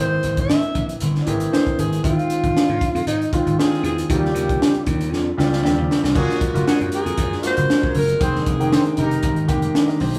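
A breathy, intimate alto saxophone carries the melody with scooped notes and vibrato over a natural-sounding baby grand piano and a growly, punchy slap bass, with a crisp acoustic drum kit, featuring a high-tuned snare and tight kick, joining at 0.2 seconds. This is a breezy, upbeat slice of polished 1980s jazz-funk pop at 117 BPM, with a light swing on the sixteenths and lush chords such as C7b13/Ab and Gbmaj9. After a drum fill at 5.1 seconds, a distant, roomy horn section enters at 6.2 seconds with a warm second line and light vibrato, all set in small-room ambience with moderate reverb.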